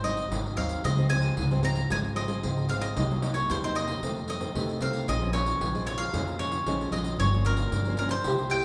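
A bright, up-front bowl-back mandolin picks a bittersweet yet lively samba-choro melody on its doubled strings at 113 BPM, over dark fingerpicked nylon-string guitar with audible finger squeak, woody, thumpy pizzicato upright bass and a jingly, distant pandeiro, the band playing live together in one room bathed in a lush large-studio reverb, as the harmony moves from Ab7 and Dbmaj7 through Cm7b5 and F7 to Bbm7 and finally Gm7b5 across this short 8.6-second excerpt.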